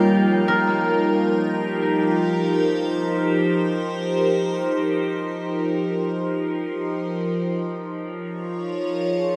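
Bathed in a cavernous cathedral reverb with a 7.2-second decay, this dark, spacious ambient excerpt drifts in free time with a reflective mood. Up front, an evolving wavetable pad with a slow attack and long release holds sustained chords, its bright, morphing unison tone colored by a phaser, moving from F9sus4 to Dbadd9/F at 7.3 seconds. In the background, a fingerpicked concert harp adds ringing acoustic arpeggios through tape echo until 4.7 seconds.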